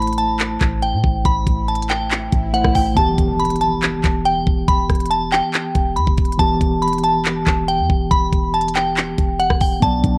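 A crystalline FM synth bell carries the melody up front, its vintage, warbling tone coloured by chorus, tremolo, a low-pass filter and the grit of cassette tape in this brooding, menacing half-time trap cut from a longer piece. Beneath it, a mellow tine electric piano plays accompaniment through built-in speakers, also filtered and tape-worn. A clean, boomy sine 808 bass with a fast attack and decaying tail holds down the low end, while an up-front electronic trap kit of knocking kick, crisp hi-hats, handclaps and rim clicks carries its own cassette texture. An electronic swell rises in the background from 1.8 seconds and breaks into an impact at 3.0 seconds, where the harmony moves from A minor to E minor. In the final moment, at 10.1 seconds, a very quiet, detuned analog pad with a slow attack, chorus and phaser slips in, all set in light reverb with the lo-fi character of a home cassette recording.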